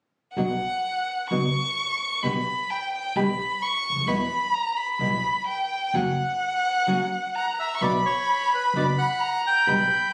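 A bowed violin, a fingerpicked nylon-string guitar and a pizzicato upright bass enter together at 0.4 seconds in this tense, melancholic tango excerpt, played with a rubato feel. The single violin sits up front in a high register as the second line, its expressive tone smooth on top and shaded with vibrato and portamento. Beneath it, the full-bodied classical guitar carries the accompaniment through a moody progression from Bm to G/B, Em and F#, while the woody, thumpy bass, strung with steel, anchors the low end at a lower level. At 7.4 seconds a reedy, bright bandoneon steps forward with the melody, shortly before the music turns back to Bm, and it plays on with the violin until the cut at 10.1 seconds. The sound carries little reverb, recorded on a phone in the room with studio reverb added.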